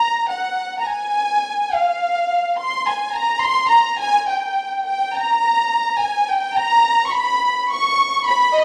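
A lush, bowed violin section carries this short Mexican folk fragment on its own, its vibrato-rich, focused tone sitting up front and singing between D#5 and C#6 with a smooth top. The mood is dramatic and passionate, moving at 105 BPM in a lightly swung 3/4. A moderate recital hall reverb and a dark production frame the 8.6-second passage.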